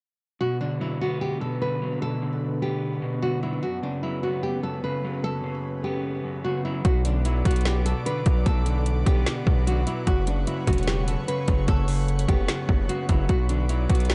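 A half-time trap groove at 149 BPM in 4/4 sets a brooding, melancholic tone in B minor, in this excerpt cut from a longer piece. For the first stretch, a full-bodied, fingerpicked nylon-string guitar carries the melody over a dark, slightly broken-up electric guitar. Both guitars sit behind a low-pass filter, and a soft, breathy pad with chorus and a slow attack holds sustained chords above them. At 6.8 seconds the trap drum kit and a distorted 808-style bass come in together, both up front and louder than the guitars. The kit pairs a hard-clipped kick with a woody snare and metallic hats, while the bass is heavy, saturated and aggressive, with a fast attack and a decaying tail. The harmony moves between Bm and F#sus4, and light digital reverb and a dark production with little top end keep the whole piece hazy and subdued.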